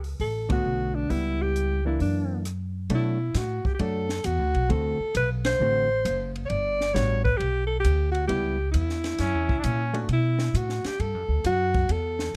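Upright bass and a compact cocktail drum kit open this short, playful stretch of small-group swing and bop in B minor, moving at 134 BPM with a swung feel. The pizzicato bass sounds woody and thumpy, sitting up front, while the dry kit pairs a punchy kick and high-tuned snare with dark cymbals across hi-hat, ride and rim click. A mellow alto saxophone carries the melody from 0.2 seconds, its subtone, vibrato and scooped notes given a smooth top and a touch of plate reverb. Just behind it, a hollow-body electric guitar comps in a dark, clean, compressed voice, and the band lands accents together at 0.4 and 5.4 seconds. The harmony moves from a D6 opening through Bm7, D7 and Gmaj7 toward F#7, where a bright trumpet briefly cuts in at 9.2 seconds with a punchy, forceful line before a closing B7 chord. Close, detailed microphones and light room reverb keep the whole take intimate and present.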